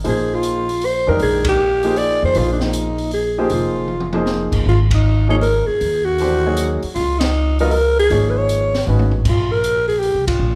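Hypnotic and searching, this short cut from a longer modal jazz piece swings in 3/4 at 156 BPM, with the eighth notes given a loose lilt. A growling alto saxophone carries the melody up front, close-miked and raspy, with a soft attack, scooped notes and light vibrato lending its gritty jazz solo a mellow edge. Beneath it, a woody upright piano with long sustain comps on suspended harmony, moving from A#9sus4 to G#9sus4 at 4.7 seconds, and it drops out at 9.1 seconds, just before the harmony settles on A#5. The pizzicato upright bass sits close and thumpy on steel strings, while the open jazz drum kit uses dark cymbals, a high-tuned snare and a boomy kick across crash, hi-hat, ride and toms. The band hits accents together at several points, and the drums play fills around 3.9 and 8.9 seconds, all set in a moderate recital-hall reverb with the feel of a church or concert hall.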